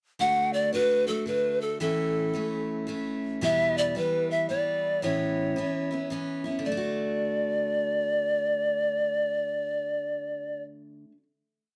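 A short, easygoing country piece in 3/4 at 112 BPM, with a swung eighth-note feel and a sunny mood in D major, tuned slightly below standard pitch. A pan flute carries the melody up front in song-like, motif-based phrases, its bamboo tone airy with a crisp, chiffy attack, lifted highs and expressive vibrato. Beneath it, a picked steel-string acoustic guitar with a bright, full-bodied dreadnought sound strums open chord shapes in a folk manner, and finger squeaks can be heard on the strings. The chords move from D through A and Em to Aadd9 before settling on a final D chord at 6.6 seconds, where the flute lingers until 10.6 seconds and the guitar rings on to 11.2 seconds. Close, detailed microphones and light reverb keep both instruments intimate and present.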